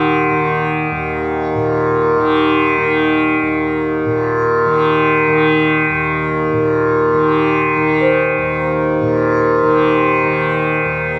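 A buzzing, shimmering tanpura drone, softly plucked and up front, anchors this spacious, meditative world-music fragment from a longer piece, while a metallic, ringing vibraphone played with medium mallets and its motor off adds a boxy texture in the background, both parts sounding throughout the 11.2 seconds and bathed in a wet church reverb.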